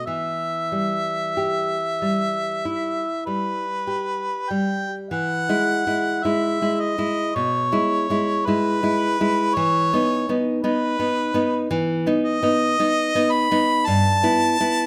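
Solemn and elegiac, this romantic duo for harmonica and classical guitar moves slowly in 4/4, at roughly 46 to 57 BPM with a free, rubato feel. A harmonica carries the melody in a classical style, its tone warm with a light vibrato and a smooth top, sitting up front in the high register. Beneath it, a nylon-string guitar supplies fingerpicked accompaniment in a lower range, acoustic and close, with an audible finger squeak adding intimacy. The music opens on E minor, then brightens into E major at 5.1 s, moving to B over an E bass at 9.6 s before settling back toward E minor with G in the bass at 13.9 s. Close, detailed microphones and a light reverb give this short passage, cut from a longer piece, a present yet gently spacious sound.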